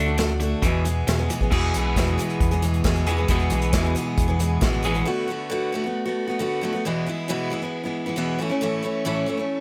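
An open-road, warm feeling runs through this short folk rock and heartland rock excerpt, moving at a straight 135 BPM in 4/4. A bright, full-bodied dreadnought acoustic guitar with fresh strings sits up front, picked through the whole passage with audible finger squeak. An electric guitar at the edge of break-up carries a compressed, picked riff with a warbly pitch drift, while a round, dark fingered bass and an airy, polished acoustic kit drive the groove. The kit enters at 0.2 seconds, up front in a small room, with a punchy kick, medium-tuned snare, dark cymbals and bundle sticks. By 5.1 seconds the bass, electric guitar and drums have dropped out, leaving the acoustic guitar and a very quiet, reedy tonewheel organ with key click and slow rotary speaker to carry the chords from D6 through E to A until 9.6 seconds. Light reverb and studio ambience frame the performance.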